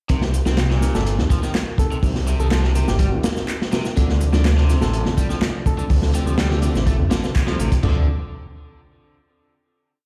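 Played through a big sound system in a bare room and bathed in large studio reverb, this swaggering, energetic breakbeat piece rides a crunchy, saturated, up-front looped break with edits, dark cymbals and a tight kick, topped by an overdriven machine layer of shaker and handclaps. A thick, menacing detuned saw bass skips through a syncopated line beneath a bright overdriven electric guitar riff, a repeating step sequence with vintage sampler grit and tape echo, while a mellow tine electric piano drops dotted-rhythm stabs in the background and a round, gentle FM synth lead adds short phrases through chorus, telephone and cassette colouring. At 4.0 seconds a very quiet, lightly overdriven tonewheel organ with slow rotary swirl sustains chords, ringing congas join a moment later, and after a band accent at 7.4 seconds the piece closes on a final chord.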